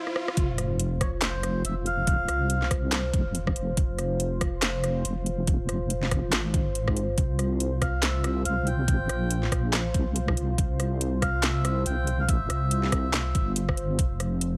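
A heavy, dark deep dubstep excerpt at 141 BPM in a swung half-time feel, where a riser and sub drop open over a brief drum fill before the drop lands at 0.4 seconds with a knocking electronic kick, an up-front garage kit of cracking snare, metallic hats, handclaps and rim clicks, and a deep, wobbling sawtooth bass with chorus, all beneath a moody, wave-folded ambient pad with slow attack and long release, while a reedy, breathy melodica with dub echo surfaces briefly near the start and returns at 7.8 seconds, shortly after the harmony moves from F minor to C.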